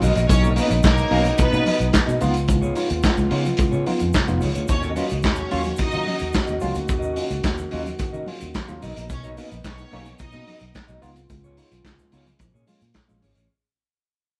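A punchy, muffled vintage drum kit sits up front with handclaps, hi-hat and snare, driving this danceable disco groove at 109 BPM in Eb minor, with a dark, foam-muted fingered bass rounding out the low end. A mellow French horn section holds close-miked sustained chords beside a worn, slightly out-of-tune tine electric piano and a clean, fingered electric guitar, while soft-handed congas and a grainy egg shaker tick quietly in the background. A focused, distant studio string section carries a second line with vibrato from 0.3 to 10.7 seconds, and the whole cut from a longer piece plays as a fade-out in one lightly reverberant room.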